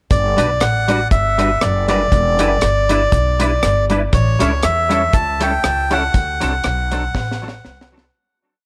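Upbeat and cheerful, this short ska piece moves at 119 BPM in G major with a light swing, a reedy, breathy melodica carrying call-phrase motifs through tape echo up front while a semi-hollow electric guitar chops the off-beats with a clean, hollow-body tone dressed in chorus and echo. Beneath them, a woody, growly upright bass walks with slides, and a dry, dark reggae drum kit with a high-tuned snare and tight kick plays a ska beat with a side-stick backbeat. The chords pass from Gmaj7 through Em7 and A7 to D7 in a moderate spring reverb, with a fade-out beginning at 6.1 seconds and a drum fill at 7.1 seconds closing the piece.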